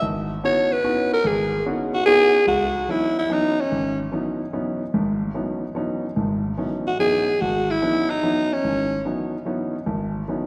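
A growling, raspy alto saxophone opens this searching, intense jazz fragment in C# minor, soloing up front over a C#m11 chord from the concert grand piano, whose deep bass and audible action noise carry the 3/4 swing at 146 BPM while the horn drops out at 4.0 seconds and returns at 6.9 seconds, all bathed in the long reverb of a concert hall.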